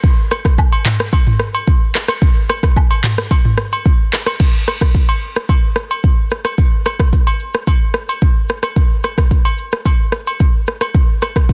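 A straight 4/4 afrobeats groove at 110 BPM carries this mellow, smooth excerpt, driven by an up-front, tape-warm electronic afro-pop drum kit with a deep kick, metallic hi-hats, rim clicks, handclaps, shaker, toms and crash cymbal, its snare softly clipped. Agogo bells and woodblock sit close and dry beneath it from 0.3 seconds, adding acoustic color alongside an egg shaker and group handclap. The dense, heavily limited mix carries little reverb, and the groove shifts into a second section at 4.4 seconds.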